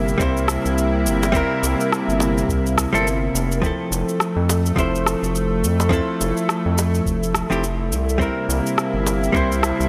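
A light 16th-note swing at 105 BPM in 4/4 drives this warm, smooth sunset chillout cut in F major, where a dark, clean, picked hollow-body jazz guitar with tape echo and a thick, warbling, detuned unison pad with chorus sit up front beside a round, wave-folded analog bass, joined by a produced electronic shaker and rim click, very quiet tight, high-tuned bongos and a deep electronic kick in the background, all bathed in a lush hall reverb as the chords move from C7 to Fmaj7 at 3.6 s and back to C7 at 8.2 s.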